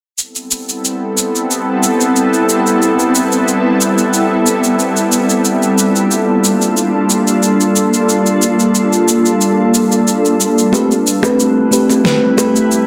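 Electronic cabasa and a fat, tape-warm snare open this smooth sunset chillout excerpt, joined almost at once by a shimmering, ethereal pad of detuned, slow-blooming chords moving from Am9 to Gm9, before a soft, round FM electric piano with chorus and tape echo and tight, high-tuned bongos slip in at 10.7 seconds, set in moderate plate reverb within a dense, heavily limited modern master.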